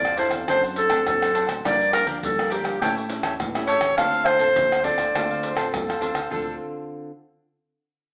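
Nostalgic and bittersweet, this short cut from a longer samba-and-choro piece moves at 103 BPM in a straight 4/4 in D minor, with an up-front solo clarinet singing a classical-style melody that sounds distant and roomy over a D7, Gm7, A7, Dm7 progression. Underneath, a fingerpicked nylon-string guitar, a bright, crisply picked cavaquinho and a dark, round dub-style fingered electric bass carry the harmony, while egg shaker, pandeiro, tamborim and a tight surdo, played with hard hands in a small-room sound, drive the groove. At 5.4 seconds a breathy wooden flute with vibrato and a soft attack slips in behind as a second line, all of it heard as a band playing live in one room through a large studio reverb and a nostalgic AM radio tone.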